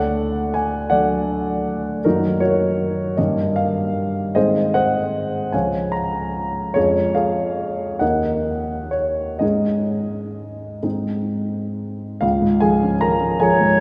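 A four-second cathedral reverb surrounds this brief passage, cut from a longer romantic piece for clarinet and grand piano. The mood is serene and lyrical, in Db major and 6/8, with a slow pulse of about 41 to 55 beats per minute counted in dotted quarters and free rubato. A dark concert grand carries the accompaniment from the start, intimate and up front, its deep bass and audible action noise giving it a vintage character. The piano moves through gentle harmonies before settling on a Db chord. Only at 13.4 seconds does the clarinet enter, mellow and distant in a classical style, sounding a single Db5 before the recording breaks off at 13.8 seconds.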